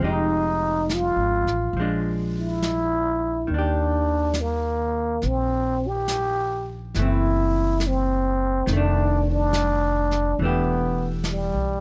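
A slow, swung 4/4 at 70 BPM sets this late-night, romantic jazz ballad, cut from a longer piece, in motion, with a brushed snare and hi-hat from a small-room kit sitting softly beneath woody, pizzicato upright bass placed up front. A plunger-muted trombone carries the melody, breathy and raspy with scooped notes and a growling wah-wah edge, while a dark, clean hollow-body electric guitar picks chords beneath it through changes from Fm9 and Bb7 to Ebmaj7 and on to Em7. The close, detailed sound carries little reverb, keeping every part intimate across the 11.8 seconds.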